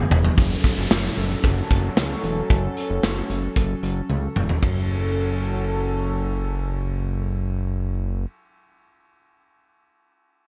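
Cool and driving, this synth-pop passage at 113 BPM in F# minor, cut from a longer piece, rests on a swirling, detuned sawtooth pad with phaser and chorus holding sustained chords beneath a fat, thick analog bass that sits up front with a filter sweep. A punchy acoustic studio drum kit with a medium-tuned snare and gated reverb opens with a fill, drives the groove with hi-hat, kick, ride, snare and toms, and stops at 4.8 seconds after a second fill. An electronic downlifter runs from 0.4 to 4.6 seconds, all set in a bright 1980s-style digital production with light small-room ambience.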